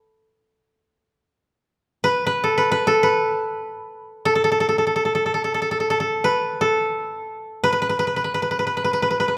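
Austere and calm, this short excerpt of Japanese traditional chamber music unfolds in free time, with a solo koto playing alone from 0.0 to 9.4 seconds within a narrow range from A4 to B4. The fingerpicked koto sounds woody and up front, its dry attack set against the moderate reverb of a recital hall.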